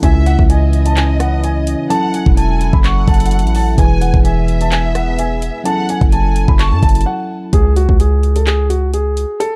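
A punchy, heavy 808-style bass and an up-front trap kit with knocking kick, metallic hats, handclaps and rim clicks drive this brooding, half-time hip hop excerpt. Above them sit a dark grand piano melody with digital delay, an expressive bowed violin section line with vibrato, a clean tine electric piano, and a detuned analog pad with chorus in the background. The violins stop at 7.0 seconds and the electric piano and pad at 7.5 seconds, leaving piano, bass and drums to close over a C#5 chord.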